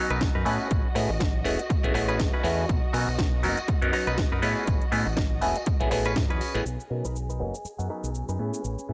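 Feel-good and joyful, this filtered disco house cut at 121 BPM in B major swings its 16ths over Amaj9 and Bmaj7 chords, with a bright, stringy clav under phaser carrying the accompaniment up front, dark, lush bowed strings with vintage 12-bit grit holding sustained chords, a clean, picked guitar riff recorded direct, a growling overdriven fingered bass, and an overdriven house kit of cracking snare, metallic hats and cabasa, joined by a distant background tambourine and a punchy overdriven electronic kick that drops out at 6.3 seconds just before a filter sweep takes over at 6.7 seconds, everything but the kick pumping with sidechain in a dry, gritty hardware sound thickened by transformer saturation.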